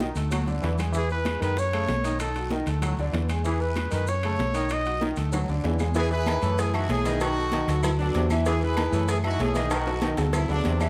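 Festive and danceable, this salsa excerpt runs at 192 BPM in E major, with a round, dark hollow-body electric bass up front and a brilliant concert grand piano with audible action noise and long sustain comping beneath a vibrato-tinged trombone section on the second line. A punchy solo trumpet carries the melody from 1.0 to 5.0 seconds, and a tight horn section takes it over at 6.0 seconds. Behind them sit ringing high-tuned congas, metal-shell timbales with agogo bells, raspy guiro, grainy maracas, very quiet woody claves and low-tuned bongos with cowbell, all in a moderate large studio reverb, with drum fills around 0.3, 5.3 and 9.7 seconds.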